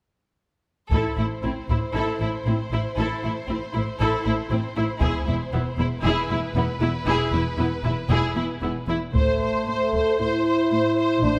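Relentless and heroic, this brief excerpt from an epic orchestral film score drives forward at 116 BPM in a straight 4/4, rooted in A harmonic minor as the harmony moves from A minor to E and back. Two violin sections share the upper register, one carrying a soft-attacked, expressive melody set back in the background while the other supplies a focused second line, both lush with vibrato. Up front, the violas fill in the accompaniment with portamento and expressive warmth, while dark cello and double bass sections anchor the low end with bowed, vibrato-rich tone. A taiko ensemble struck with hard sticks pounds close and acoustic from 0.9 seconds, drops out at 6.0 seconds, and returns at 9.1 seconds, just as a mellow, distant French horn section enters with tight sustained chords. The whole ensemble sits on a moderate scoring stage reverb with a 2.2-second tail that lends the strings and horns a grand, roomy depth.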